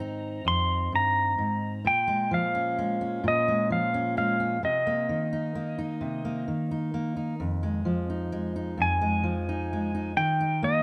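A clean, compressed pedal steel guitar sings the heartbroken melody of this melancholic acoustic folk-pop ballad in 6/8, its slide lines played with fingerpicks and shaped by volume swells up front, over a full-bodied jumbo steel-string acoustic guitar whose fingerpicked accompaniment, finger squeaks included, moves through Abadd9, Bbm7, Cm7 and Fm7 in light reverb.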